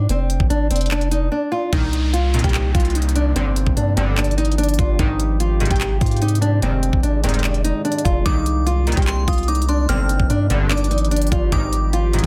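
Brooding, hard-hitting trap in a half-time feel, this short cut opens on a small, fingerpicked nylon-string guitar melody with delay, set up front over a deep, long 808-style bass and a layered electronic pop drum kit with a knocking kick, crisp hats and handclaps. The drums drop out briefly at 1.3 seconds before a glossy, chorused polysynth adds bright stabs alongside a short downlifter, and a moody, detuned ambient pad with reverb settles into the background from 2.6 seconds as the chords move through Cm7, G7, Abmaj7 and Fm7. At 8.3 seconds a crystalline FM bell with chorus and delay adds a high second line over a dense, heavily limited mix with little reverb.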